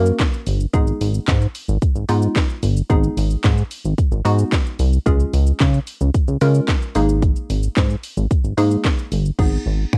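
A glossy, saturated chorused synth bass with pulse-width modulation sits up front in this euphoric, summery dance-pop excerpt at 111 BPM, pumping beneath a hollow, detuned square pluck with a mellow chorus while a layered house drum kit with punchy kick, cracking snare, warm hats, handclaps, finger snaps and shaker carries a cassette-tape grit through a dry home recording over chords moving from Gb and Abm to Db and Absus2.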